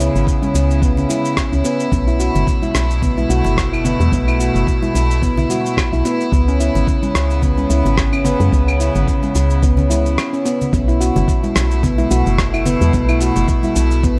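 Set at 109 BPM in 4/4 with a lightly swung sixteenth feel, this meditative, earthy organic downtempo excerpt lays a gritty, sampler-style shaker, rim click and claves under a thumpy kick that enters at 0.3 seconds, with dry hand-struck congas and bongos in the background, a round, woody FM bass up front, ringing nitrided-steel handpan arpeggios through low-pass filter and digital delay, and sidechain-pumped sustained chords from a reedy, gut-strung period chamber string section, moving through C#m7 and B7sus4 in light studio reverb before a brief break at 10.2 seconds.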